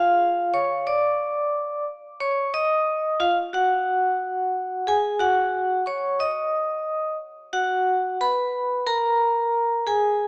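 A 4/4 pulse at 90 BPM carries a 60% swing on the sixteenths, giving this hip hop fragment, cut from a longer piece, a nocturnal and cool feel in G# dorian. A vibraphone struck with hard mallets plays solo from 0.0 to 10.3 seconds, ranging from E#4 up to D#6 with a metallic, ringing tone, a slow motor vibrato and a bright edge. It sits up front, and a slapback echo trails each note. The harmony moves from C# through F#5 at 2.2 seconds and D#madd11/F# to G#m9 at 7.5 seconds. A moderate, lush hall reverb with a 2.5-second decay surrounds the rough home demo mix, which has a small-speaker sound.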